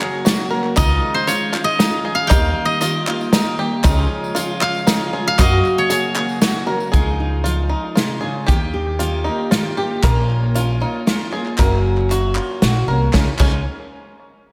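The recording has a big arena sound, with moderate scoring-stage reverb around an up-front drum kit and upright bass. It is a hopeful indie folk piece in 3/4 at 116 BPM in Db major, cut from a longer piece, with an arrangement that builds. A woody koto, played with fingerpicks and colored by slapback and tape echo, carries the melody until 7.6 seconds. Beneath it are a bright, full-bodied picked acoustic guitar with slapback echo, a twangy bluegrass banjo playing arpeggios through tape echo, and a soft, flute-like tonewheel organ holding chords through a slow rotary speaker in the background. A natural country kit with a punchy kick and medium-tuned snare drives the rhythm alongside the pizzicato bass, while crisp group handclaps and a jingly tambourine sit further back. At 6.9 seconds a fingerpicked acoustic guitar joins the accompaniment, and the handclaps return at 10.0 seconds as the chords move from Bbm to Gb before landing on Dbadd9.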